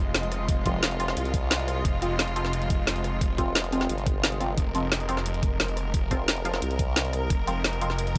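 Dark technical drum and bass at 176 BPM in F minor, this short cut from a longer piece has a futuristic edge and sits on a single F minor chord throughout. A snarling, distorted saw bass growls up front with overdrive and sidechain pumping, joined at 0.7 seconds by a formant-sweep wobble bass that adds a chorused, wobbling sawtooth voice in the same low register. The drum kit brings a woody snare, bright hats and rim clicks, overdriven and placed forward, while an overdriven electronic kick with a knocking punch enters at 0.5 seconds. Above the low end, a filtered dub chord stab offers muted, mellow plucks coloured by phaser, analog chorus and dub echo. A clear, distant studio string section holds lush bowed chords with vibrato, and a cloudy granular pad drifts high in the background with its own reverb, both pumping under the sidechain. A light reverb gives the mix a modest sense of space.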